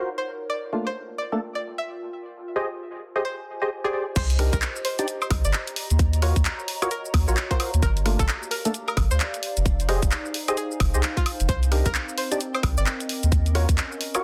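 A hollow, percussive organ stab with chorus and dub echo leads this soulful, skippy two-step UK garage excerpt in C minor at 131 BPM, with a warbling, nostalgic lo-fi pad pumping behind it, a twangy, nasal resonator pluck carrying the melody through dub echo, and then the drop at 4.2 seconds, where a deep, round sub bass, a tight layered kick and a swung garage kit of hi-hat, handclaps, rim click, shaker, woodblock and crash drive the dense, heavily limited mix.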